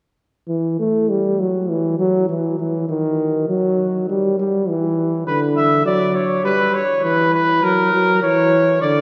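A dark, smooth-topped trombone opens this solemn classical brass canzona at 0.5 s, its low line carrying a light vibrato in a serious, imitative style. At 5.3 s a warm, punchy trumpet enters as a second voice with vibrato, and the harmony moves through Bm/D and Em/G toward F#. Both players sit up front yet sound distant, set back in a roomy cathedral with a long, wet reverb tail in this brief passage cut from a longer piece.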